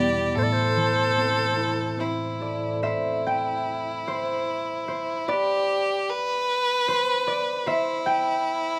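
A bright wooden flute carries the melody of this haunting Celtic slow air, its airy tone marked by vibrato, a crisp attack and a slightly unsteady quality before it drops out at 2.0 seconds. Beneath it, a concert harp provides fingerpicked accompaniment across a broad range, its ringing, warm sound placed up front. A single bowed fiddle plays a second line throughout, clear and biting with light vibrato and an intense edge. The flute and harp both carry a short slapback echo, while the rest of the sound stays dry, as if recorded outdoors. The piece moves in a free, rubato three-beat feel, resting on A minor before the harmony falls away at 2.8 seconds, where a harp solo begins amid the longing mood. The recording is cut from a longer piece.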